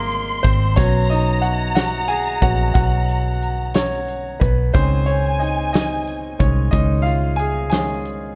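A tender, heartfelt six-eight pop ballad moves at a slow 61 BPM in dotted quarters, with a straight feel and tuning set to A4 = 438 Hz, in this short passage taken from a longer piece. The concert grand piano carries the spotlight as the featured solo voice throughout, its clear, open tone sitting up front with deep bass and short sustain across a span from Eb3 to Ab5. Underneath, a vintage fingered electric bass gives a round, foam-muted, amped low end between Ab1 and Db2, while a natural country drum kit in a small room adds hi-hat, a medium-tuned snare and a punchy kick from 0.1 seconds. A chamber violin section plays a focused, distant second line high between Ab5 and C6 with vibrato and delay, dropping out at 6.7 seconds. The harmony moves from Abadd9 to Bsus2 and then Dbsus2, all wrapped in studio reverb for a dark, warm production.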